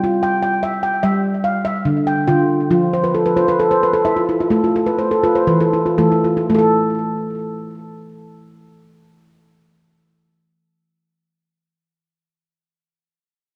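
A short cut from a longer piece, this recording sits the handpan up front in a wet, echoing chamber reverb layered over a small room's ambience. The music is meditative world tuned percussion in A minor, straight 4/4, drifting between 57 and 75 BPM, with a gentle, hypnotic mood. The handpan plays solo throughout its 11.1 seconds, ranging from D3 to G5, its nitrided steel ringing dark and smooth under the fingertips, with a delay trailing each note. The opening stretch slows down through the first 6.5 seconds, and a handpan fill runs from 2.9 seconds, passing over harmony that moves from G5 to Fmaj9#11 and on to A5. After 6.5 seconds, a second section lets the harmony fall away, leaving the instrument's resonance to hang in the reverb.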